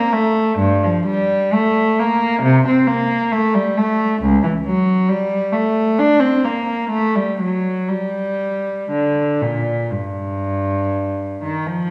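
The recording places a single cello in a resonant recital hall, where a wet reverb with a 1.4 second decay hangs around every bowed note. This is a baroque-style suite movement for unaccompanied cello in G minor, tuned to A4 = 441 Hz, and the passage is cut from a longer piece. The mood is introspective and flowing, with a free rubato that moves between 59 and 68 BPM over a 4/4 metre. The lone cellist plays with a period-style gut-string tone that sounds nasal and reedy, spanning C#2 up to D4 across the full 11.9 seconds.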